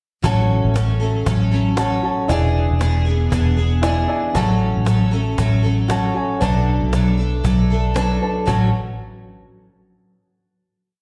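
Acoustic pop with a sunny, heartfelt mood and a light swing, this short piece moves through a full-bodied, double-tracked steel-string acoustic guitar strumming open folk chord shapes with slapback echo, a woody, intimate upright piano with audible action noise pushing drop-2 chords through its own slapback echo, a dark, round, foam-muted electric bass holding sustained notes up front, and a snappy, close, dry cajon struck with hard hands alongside stomps and claps, all heard as a live gig through the venue's PA in a recital-hall reverb, with its single chorus resolving onto a final chord at 8.5 seconds.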